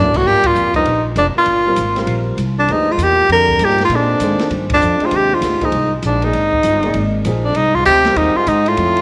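Modal jazz in G phrygian at a brisk 197 BPM swing, cool and hypnotic, in a short excerpt that moves from Gm7 to Ab at 5.1 seconds, with the band hitting accents at 0.4 and 4.7 seconds. An up-front tenor saxophone carries the melody with vibrato, scooped notes and a smooth top, while a punchy, forceful trombone plays a second line in the background, and a natural-sounding grand piano comps quietly until 8.5 seconds. A woody, growly pizzicato upright bass and a dark, boomy drum kit with dark cymbals sit in a moderate echo chamber reverb.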